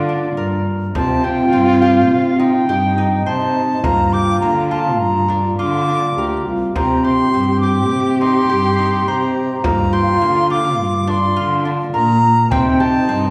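Contemporary instrumental chamber music in an uneven 5/4 metre, this pensive, restless passage is cut from a longer piece and set in a church or concert hall with a wet, lingering reverb. A bright, reedy baroque flute of wood carries the melody up front, its pure tone tongued and shaded with vibrato. Beneath it, a French horn plays a close-miked second line in classical style, its warm sound also touched with vibrato. A concert harp rings out fingerpicked arpeggios, while a muted cello played con sordino supplies a dark, veiled bowed bass, smooth on top and placed up front. A deep, large frame drum, close and dry, enters at 0.4 seconds and drops out at 12.8 seconds, as the harmony moves among minor chords before settling on Cm at 12.5 seconds.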